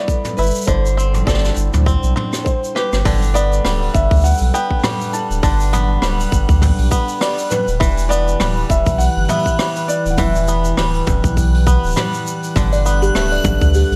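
Light reverb and a soft studio ambience frame this pastoral, delicate folktronica excerpt with a gently swung feel. A felt-muted upright piano carries an intimate, boxy melody with audible action noise and digital delay until 10.7 seconds, over a warbling, nostalgic tape-like pad and a bright, twangy bluegrass banjo playing delayed arpeggios. A tight electronic kick and a vintage brush kit with hi-hat, rim click, shaker and toms share the drums, and a round, deep sub bass sits up front. A reversed, dreamy swelling texture drifts in the background from 3.8 seconds, a drum fill and band accent lead into the second section, and a tinkling music box adds a brief second line at 12.7 seconds.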